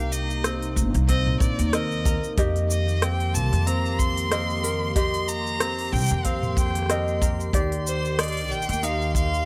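At 93 BPM in 4/4 with a gentle sixteenth-note swing, this pastoral, hopeful folktronica excerpt rides a punchy acoustic kick and a crisp, tape-toned electronic kit of cabasa, hi-hat, rim click and toms re-recorded in a small room, over a woody, thumpy pizzicato upright bass. A bright fingerpicked ukulele with lo-fi sampler grit and delay plays arpeggios, while a warbling, nostalgic pad with chorus holds chords moving through Cm7, F9sus4 and Ebmaj7, all tuned to A4 = 435 Hz. A rich, bowed solo violin with vibrato and delay carries the melody, and from 3.2 s a dreamy reversed granular texture swells quietly in the background.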